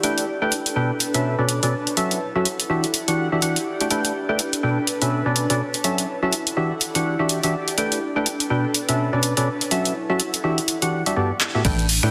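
Uplifting and euphoric, this excerpt of piano house moves at 124 BPM in 4/4 with a swung sixteenth-note feel, set in A mixolydian and tuned slightly below standard pitch. Up front, a hollow, percussive organ stab carries the riff through lush chorus, delay and sidechain pumping, while an airy, breathy pad with a slow attack and long release sits quietly beneath it. A punchy analog drum machine, overdriven and dry, drives the groove with crash cymbal, finger snaps, handclaps and hi-hat, touched with studio reverb. The chords cycle through A9sus4, Bm9, F#m7 and Em9 before landing on Gmaj9, and a drum fill at 11.4 seconds leads into the final moments. At 11.6 seconds a dark, organ-like FM bass and a background electronic kick arrive, joined by a very quiet, gritty tambourine, all within a dense, heavily limited mix bathed in moderate hall reverb.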